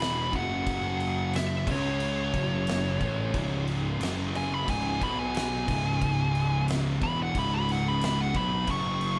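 A compressed, picked fuzz lead guitar sits up front from the first moment, soloing in its upper register over a heavy, ominous stoner and doom metal groove in a straight four. Behind it, two thick fuzz guitars play a distorted riff in the background, one dark and the other warm, moving through chords of F#5, C#5 and B5, reaching C#m at 5.7 seconds and returning to F#5 near the end. A growly, bright picked electric bass with overdrive rumbles underneath, and an oversized low-tuned drum kit fills a stone room that pumps around its fat snare, punchy kick and dark crash cymbals. The band plays live together in one space with a light reverb, and this 9.2-second excerpt is cut from a longer piece.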